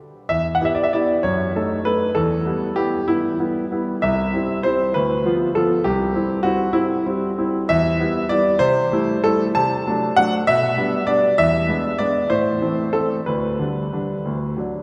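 This classical-period piano sonatina is an elegant, cheerful excerpt in 6/8, its uneven beats pulled freely by rubato. A solo grand piano plays from 0.3 to 14.8 seconds across a span from C2 to A5, its tone warm, polished and present, sitting up front in the mix. A cathedral-like reverb with a 5.6-second tail wraps the playing in the resonance of a church or concert hall.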